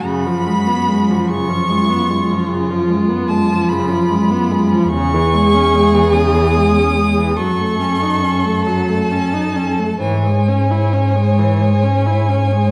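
A bowed cello sits up front in this solemn, melancholic slow movement for string quartet, its warm bass line marked by vibrato and expressive portamento as it moves between E2 and G#2. Above it, a clear, focused viola plays close-sounding accompaniment, matching the cello's level, while two violins play more quietly: one, sounding distant, carries a smooth, even melody high between G#5 and D#6, and the other traces a dark, smooth second line in the middle register. The pulse is slow and rubato, around 43 to 51 dotted-quarter beats per minute in 12/8, with the instruments tuned to A4 = 435 Hz. The harmony opens on a C#7 over F# and settles into C# minor at 4.9 s, passing through a half-diminished D# chord before resting on C# minor over G# from 10.0 s. A wet recital-hall reverb and a dark, warm production surround all four players, and the passage, cut from a longer piece, ends at 12.7 s.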